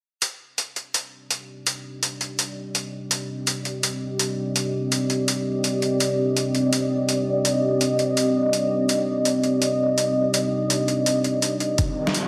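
A half-time drum and bass groove at 166 BPM in C minor, swung on the 16ths, starts at 0.2 s with a gritty, pitched-down sampler-style kit of hi-hat and snare, compressed, overdriven and up front. From 1.8 s a deep, moody pad of detuned sawtooth and sine layers with a sub octave warbles through sustained chords, pumping from sidechain compression under chorus and reverb, giving a tense, dark mood. Near the end a thumpy electronic kick lands and a quiet electronic riser closes this cut from a longer piece, the dreamy mix soaked in a lush hall reverb and marked by lossy compression artefacts.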